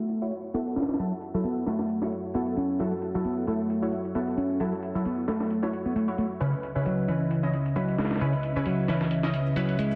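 Swung sixteenth-note breakbeat drums from a pitched-up, sampler-style kit with a high-tuned snare drive this energetic, gritty breaks excerpt, as a growly, up-front picked electric bass plays a riff beneath punchy, detuned orchestra-hit-like synth stabs, a moody analog pad sustains chords that move from F#m7 to C#m7 at 6.4 seconds under a filter sweep and chorus, and a very quiet electronic shaker sits in a lush hall reverb.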